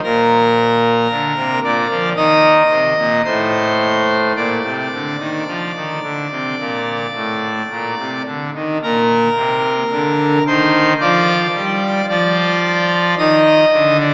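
A slow, straight 4/4 pulse at 55 BPM carries this majestic, reverent classical chorale in Bb major, tuned to A4 = 439 Hz. A solo pipe organ on full registration sits up front, its brilliant mixtures and romantic voicing spanning A2 to Eb5 over harmony that moves between Bb and Eb5 with brief unharmonised gaps, and the opening phrase returns at 8.8 seconds. The sound is bathed in a long, wet cathedral reverb yet heard through a small-speaker tone, and the passage is cut from a longer piece, ending at 14.1 seconds.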